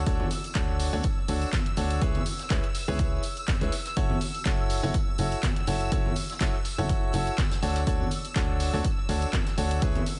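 A dry mix with a dulled top end carries this energetic, bittersweet slice of piano house, with a lightly swung groove. A clear grand piano riff with digital delay sits over a round, mellow FM bass and shimmering vintage string-machine violins with ensemble chorus, all three pumping to the sidechain as the chords move from Dmaj7 through C#m7 and F#m7. Underneath, a layered, tape-warm electronic kick runs alongside the handclaps and hi-hat of a punchy analog drum machine, ringing, distant tambourine and congas, and a very quiet jazz kit of brushed hi-hat and snare.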